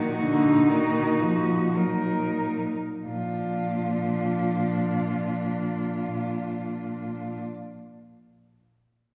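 Serene and lyrical, this short excerpt from a longer classical piece for cello ensemble moves in a rubato 3/4 in B-flat major, drifting between 43 and 66 BPM and slowing down over its first 3.1 seconds. Four bowed cellos, one player each, sound together from 0.0 to 7.4 seconds. The melody sits in the upper register, sung with vibrato and portamento in a distant, expressive voice, while a second line beneath it is intimate and close, played sul tasto with light vibrato, a soft attack and an airy bow. A rich, smooth and even accompanying cello sits in the middle register, and the bass cello holds a low B-flat with a focused, up-front tone and vibrato. The harmony rests on E-flat minor over a B-flat bass before settling onto B-flat at 3.1 seconds, where a new section begins. A wet recital hall reverb places the ensemble further back in the room, lending the whole a gentle, lingering bloom.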